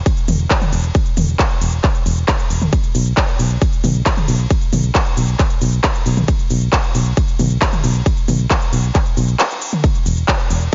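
A straight 4/4 pulse at 135 BPM drives this euphoric, emotional uplifting trance section, cut from a longer piece, with a punchy, overdriven electronic kick sitting up front from 0.1 seconds alongside a layered big-room dance kit of crisp hats, handclaps, ride cymbal, shaker and toms, also overdriven. Beneath them, a round, dark FM bass with a fast attack and decaying notes moves between E1 and B1, thickened by tube saturation and sidechain pumping. Light reverb and a digital ambience frame the mix, and its top end stays capped at 7.5 kHz.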